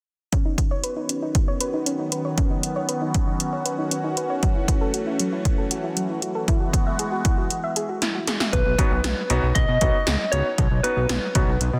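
A straight 4/4 pulse at 117 BPM from punchy, gated 80s electronic pad drums drives this nostalgic, bright synth-pop piece in B mixolydian, where a swirling phased analog pad holds sustained chords and a soft, round pluck spins chorused, delayed arpeggios through Badd9, F#m7 and Eadd9 until a drum fill at 8.0 s, after which a warbling FM synth lead carries the melody over a fat, saturated analog bass from 8.5 s and a polished baby grand piano, set in a lush hall reverb with a dense, heavily limited master.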